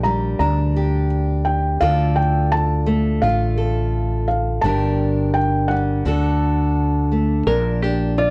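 This haunting, melancholic slice of acoustic folk opens at once with a felt-muted upright piano carrying the melody, its soft, thickly damped tone close and intimate, with the faint clatter of its action audible beneath each short-lived note. A fingerpicked steel-string acoustic guitar sits up front alongside it, its fresh strings warm against the piano's hush, while a round, dark fretless electric bass anchors the low end and stands out as the most present part. At 85 BPM in a straight 4/4, the duo-sized arrangement moves through G minor, passing from Gm/Bb through Dm, Gm and D before settling on Bb at 7.5 s. Just then a twangy, plunky open-back banjo enters with brief arpeggios, adding a percussive edge in the final moments. Light reverb surrounds the group, and a worn cassette-tape character gives the whole recording a warbling pitch drift that deepens its faded, melancholy air, before the passage is cut off at 8.3 s as part of a longer piece.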